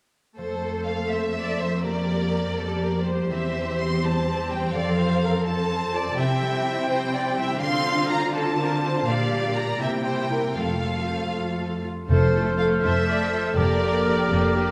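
In a fast 6/8 at 82 dotted-quarter beats per minute, this spirited, cheerful romantic orchestral passage in F major opens at 0.4 seconds with a lush, vibrato-laden violin section carrying the melody over a smooth second violin line, rich violas, ringing fingerpicked harp arpeggios in the background and a rich, lush cello section on the bass. At 12.1 seconds the texture broadens as a hollow, airy flute, a background oboe and a very quiet, distant clarinet add second lines, a mellow, tight French horn section holds sustained chords, and dark, woody double basses deepen the bass. A brief, close and dry timpani part on medium mallets sounds until 12.8 seconds, all set in the generous reverb of a scoring stage.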